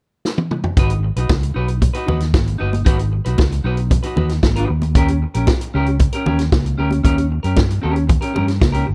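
A straight 4/4 disco groove opens with a drum fill on a vintage kit at 0.2 seconds, its punchy kick and medium-tuned snare sitting up front with a rolled-off top in a small, natural-sounding room. At 0.8 seconds an amped fingered electric bass arrives up front, alongside a clean, picked semi-hollow guitar over G#m7 that moves to D#7 at 4.7 seconds, while ringing, high-tuned congas played with hard hands sit close and dry in the background. The dark, warm production suits this sultry, glamorous cut.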